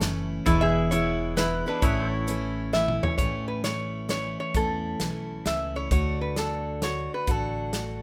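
A swung waltz in 3/4 at 132 BPM sets a down-home, sunny honky-tonk and classic country mood in A major, in this short section cut from a longer piece. Up front, a lap resonator guitar carries the melody with fingerpicks and slide, its tone metallic and nasal. Beside it, a picked steel-string dreadnought acoustic guitar supplies bright, full-bodied accompaniment. An upright bass plucks a woody pizzicato line underneath, while an airy, polished country drum kit with a punchy kick and medium-tuned snare keeps time and plays a fill from 2.7 to 3.2 seconds. In the background, a clean, compressed, twangy pedal steel guitar adds sustained chords with volume swells until 3.2 seconds, when the second section begins. The chords move through E, A and D, and the dry recording carries little reverb.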